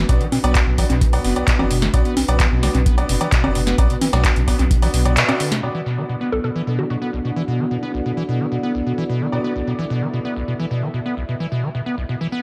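Acid house at 130 BPM in B minor, gritty and hypnotic, cut from a longer piece and opening on a drop over a B minor chord. An up-front, squelchy square-wave acid bass carries the riff with overdrive, lush chorus and dub echo, over a round, deep analog bass that pumps against the sidechain until 5.2 s, where the band hits an accent. A deep electronic kick and a booming analog drum machine with a crisp snare, metallic hats, handclaps, congas and crash cymbal drive the groove, the machine's parts dulled by low-pass filters and trailed by dub echo, before the drums drop away by 5.7 s. Throughout, a moody detuned sawtooth pad breathes in the background under sidechain pumping, while a brilliant, worn grand piano adds filtered stabs soaked in echo. In the second half a nostalgic, lo-fi tape-like pad enters at 6.2 s with its own reverb, and a hollow, bouncy square pluck flickers briefly in the background with chorus and echo. 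The mix is echo-heavy with a light reverb.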